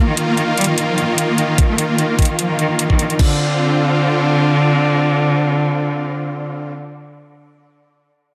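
Light digital ambience surrounds a close, up-front mix in this short cut from a longer heavy wobble dubstep piece, set in D phrygian at 149 BPM in 4/4 with a half-time feel and a gentle 16th-note swing. A dark, bowed cello carries the melody between D3 and Bb3 for the full 6.7 seconds, its single player expressive with vibrato and portamento, roughened by vintage 12-bit sampler grit and trailed by tape echo. Beneath it, huge sawtooth supersaw chords sustain from D3 to F4, lush, detuned and bright with a fast attack, pumping against the sidechain as the harmony moves from Ebsus2 to Dm7 at 3.2 seconds. A layered dubstep kit with metallic hats and crash cymbal enters at 0.2 seconds, and a knocking electronic kick joins up front at 1.6 seconds, both re-recorded in a small room and dropping out at 3.3 seconds. The result feels menacing and chaotic, with the cello's brooding line set against the massive synth wall.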